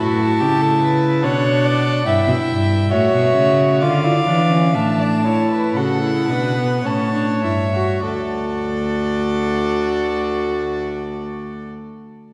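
A baroque-style classical fugue for string quartet in D major, cut from a longer piece, moves in 3/4 at a tempo between 47 and 73 BPM, with a lively yet stately mood. All four bowed parts play throughout, each a single player in period style with gut-string tone: a warm violin with light vibrato carries the melody from D5 to A5, while a dark, nasal violin sits farther back on the second line. Below them a viola with a smooth top supplies accompaniment, and a rich cello, close and up front, anchors the bass. The pace slows from 0.8 to 8.1 seconds, where the harmony arrives on D and a new section begins. A wet concert hall reverb with a 2.0-second decay surrounds the ensemble and gives the reedy strings a spacious, resonant setting.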